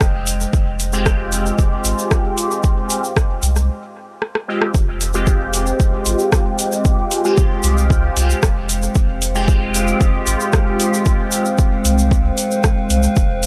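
A straight 4/4 pulse at 114 BPM drives this deep, hazy dub techno excerpt in F minor, built on an overdriven, up-front electronic kick, a tape-toned vintage rhythm box with metallic hats and rim clicks, a grainy tube shaker, and a clean sine sub bass that pumps with the sidechain beneath a moody, detuned analog pad holding Fmadd9. From 0.9 seconds a juicy, resonant sawtooth polysynth plays stabs soaked in chorus, phaser and dub echo, its filter sweeping through the opening 4.7 seconds, which close with a break from 3.7 seconds and a drum fill from 4.2 seconds. An eerie, metallic FM drone sits very quiet on C4 from 5.1 seconds, all captured in a dry, gritty hardware sound with lossy compression artefacts.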